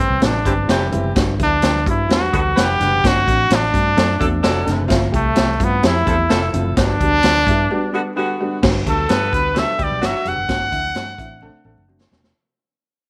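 Uplifting and warm, this uptempo 1960s-style soul excerpt moves in a straight 4/4, cut from a longer piece. A bright, up-front trumpet carries the melody with vibrato and a smooth top, while a clear saxophone section with light vibrato and a loose jazz feel plays a second line from 0.5 to 10.3 seconds. Underneath, a dark, woody upright piano sounds worn and slightly detuned, its boxy tone and audible action noise giving it an intimate quality, and a vintage foam-muted fingered electric bass adds a round, amped low end. A swinging big-band drum kit with a boomy kick and medium-tuned snare sits in a roomy studio space, joined by very quiet congas with a thick skin. After a break at 7.7 seconds the music fades out, closing with a drum fill from 11.4 seconds, all set in light small-room reverb.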